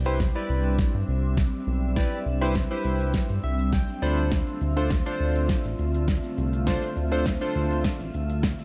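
Bright, chorused retro synth keys with a glossy pulse-wave shimmer supply the accompaniment in this bittersweet, driving dance-pop excerpt at 102 BPM in D dorian, adding a fill at 3.1 seconds above a round, deep analog bass and a glassy, ethereal FM pad, all three pumping with sidechain, while a pop drum kit with knocking kick, fat snare and crisp hats powers an 8.6-second build-up carrying a drum fill and a filter sweep over Cmaj7 and Dm7 in a dark, lightly reverberant mix.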